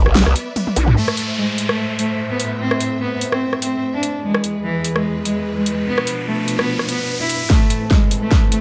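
A reedy, gut-string cello carries the melody from 1.0 seconds, one bowed player in period style sitting close and up front with a dub echo trailing its lines. It plays over a distant, lush string section holding bowed chords with vibrato, low-pass filtered and pumping against a sidechain. This is heavy, aggressive wobble dubstep at 147 BPM in a half-time 4/4 feel with a light swing on the sixteenths, set in A harmonic minor and tuned slightly below standard pitch. The chords move from Bm through Am, E and Bdim before returning to Am. An electronic, layered drum kit brings a huge snare, metallic hats, ride, rim clicks and toms, all with a tape-warm, up-front sound, and drum fills mark the phrase turns. A nasal, saturated wobble bass with a formant-filtered vowel sweep, chorus and overdrive bursts in briefly at 0.8 seconds. Electronic risers and downlifters build tension until an electronic kick lands at 7.5 seconds and launches a build-up, all within a light reverb in this short cut from a longer track.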